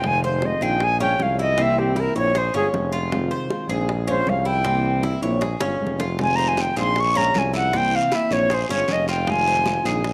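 An airy silver concert flute with vibrato and a soft attack carries the melody up front throughout this nostalgic excerpt of Cuban son and guajira, over a punchy, clear tuba bass line with a smooth top. Underneath, a metallic, double-strung Cuban tres picks arpeggios while a dark, fingerpicked nylon-string guitar with audible finger squeak sits in the background. Tight, high-tuned bongos stay close and dry, with a drum fill at 5.6 seconds before a raspy, saturated guiro joins at 6.2 seconds, all set in a moderate echo-chamber reverb.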